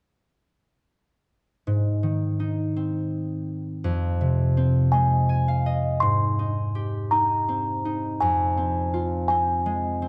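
Children's lullaby in 6/8, innocent and gentle, where a ringing, fingerpicked concert harp sits up front carrying the chords from 1.7 seconds and plays a fill as a delicate, tinkling music box enters at 4.9 seconds with a mellow, slightly out-of-tune, vintage melody, all within a dark production and moderate recital hall reverb until the fragment breaks off at 10.1 seconds.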